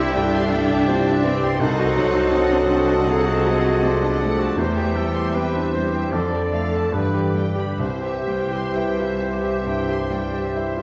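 A clear, up-front grand piano carries the melody from the opening moment of this lush, lyrical classical passage in C major, moving in a rubato 4/4 between 63 and 83 BPM. Distant violins also sing the tune in the background while a second violin section, an oboe, an airy flute group and a very quiet clarinet from 0.1 seconds weave second lines. Beneath them, a warm bassoon, woody violas, mellow French horns holding sustained chords, and focused cellos and double basses fill out the harmony as it passes through a diminished chord and a cadence back home, all bathed in a reverberant recital hall with softened highs.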